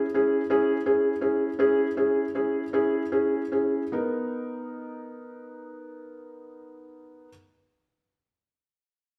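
The recording carries a wet stone-room reverb with a 1.3 second decay, capturing a live performance in a single space. This short pop fragment, cut from a longer piece, sways tenderly in 6/8 at 48-56 dotted-quarter beats per minute in B major, tuned to A4 = 439 Hz. A felt-muted upright piano provides the accompaniment from 0.0 to 7.3 s, sitting up front with a soft, mellow, intimate character and audible action noise that lends it a natural closeness. The piano stays in a compact span from B3 to A#4, opening on an E6 chord while the tempo slows through the first 3.9 s. At 3.9 s the music moves into a new section on a Bmaj7 chord.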